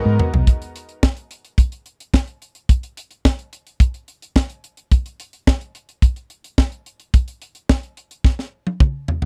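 A polished, up-front acoustic funk kit with a high-tuned snare and tight kick drives this slick, late-night slice of early-eighties boogie funk, entering at 0.2 s and rolling through fills at the start and again from 8.2 s, while a lush, detuned sawtooth-and-square unison pad with chorus sustains bright, thick chords only in the opening half-second, all captured in a dry, close studio sound.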